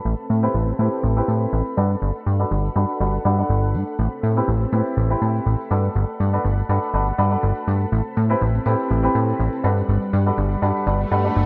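Bright 1980s-style digital production and lush hall reverb frame this nostalgic, funky filtered disco house excerpt, where a brilliant, up-front baby grand piano with phaser and 12-bit sampler grit accompanies a vintage string machine with ensemble chorus sustaining Am9 and Gmaj7 chords over a punchy, plucky analog bass and a very quiet tambourine, all under a filter sweep until an electronic swell arrives at 11.0 seconds.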